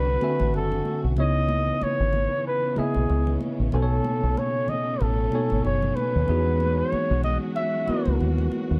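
A bucket-muted trumpet carries the melody with a veiled, breathy tone, light vibrato, scooped notes and a slapback echo over a soulful, sensual neo-soul R&B groove at 94 BPM in E major, with a worn, slightly out-of-tune tine electric piano, lush, distant bowed strings, a dark, round, foam-muted fingered bass up front and bright, damped congas in the background, all captured in a dry, close 1970s-style studio sound.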